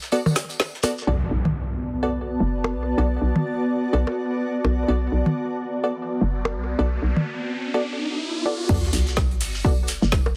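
Hypnotic and sparse, this minimal techno excerpt opens and closes on brief drops where a dry, background 70s drum kit, a grainy shekere, and an overdriven garage kit with woody snare and metallic hats gather, joined in the closing drop by a punchy tape-warm electronic kick, while between them a hollow, bouncy FM bass pumps under crisp, detuned wavetable chord stabs with dub echo, overdriven electronic toms and percussion blips, a cloudy granular pad from 1.8 to 7.7 seconds, and impacts, a riser and a sub drop, all inside a heavily compressed, radio-like sound.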